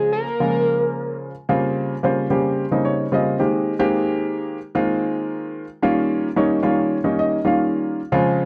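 A gritty, screaming synth lead with a guitar-like edge opens this short jazz excerpt. Its saturated tone is colored by phaser, slapback echo and vibrato as it holds a brief phrase between Ab4 and Bb4 before stopping at 1.2 s. Beneath it, an intimate baby grand piano carries the accompaniment throughout, its natural tone and short sustain revealing audible action noise. After the opening Bbm7, the harmony moves through Bbm69, Abmaj9 and Eb9, with the piano playing alone from 1.2 s to 8.5 s. The mood is slick and driving, with a straight 4/4 feel, and both parts sit up front in a dark production with moderate studio ambience.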